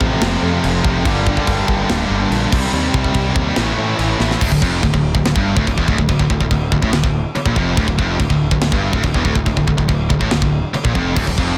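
A tight, up-front acoustic drum kit leads this dark, epic heavy metal excerpt, its tight kick, medium-tuned snare, crash and china cymbals sitting mid-forward with a rolled-off top in a studio room sound. The pace is a straight 143 BPM in 4/4. Beneath it, a growly fuzz-driven electric bass plays from D1 to A2, while two high-gain guitars, one heavy and one scooped, pick their way through distorted riffs in the background for the whole passage. A crunchy, double-tracked overdriven guitar adds a bright riff reaching up to C5 during the opening 4.4 seconds, drops out, then returns briefly at 11.2 seconds. The chords move through F, Gm, Cm and A before a drum fill at 4.2 seconds pushes the music into a D minor section from 4.4 seconds. Light reverb and a dense, heavily limited modern master give the track a compact, forceful sound.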